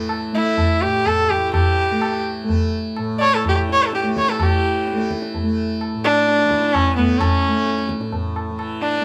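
In a straight 3/4 at 127 BPM that gradually speeds up, this short cut from a longer Hindustani classical performance in A, raga khamaj, carries a serene, devotional mood. A softly plucked tanpura drone begins at 0.0 s and sustains in the low register, its buzzing, shimmering resonance forming a bright acoustic bed. The tabla enters almost at once, low-tuned with a short ring and a vintage, band-limited character. From 0.3 s a single bowed sarangi takes the melody up front, its clear, nasal and earthy voice gliding between notes with portamento while sympathetic strings ring beneath it. A second section begins at 4.4 s as the tempo continues to press forward, and the whole performance sits in a wet studio reverb.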